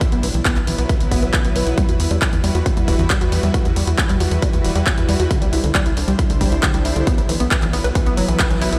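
An overdriven, punchy layered kick drives a straight pulse, joined by dry analog handclaps and hi-hat and a tight, decaying sawtooth-and-square sequencer bass that pumps with the sidechain from 0.1 seconds. Above them, a round, detuned analog pluck plays arpeggios through chorus and delay under a running filter sweep, while a lush, full-bodied supersaw pad holds sustained chords moving from Bsus4 through Emadd9 and Cadd9 and back. This emotional, driving uplifting trance fragment, played through a big system in a bare stone room, is punctuated by a band accent at 8.4 seconds.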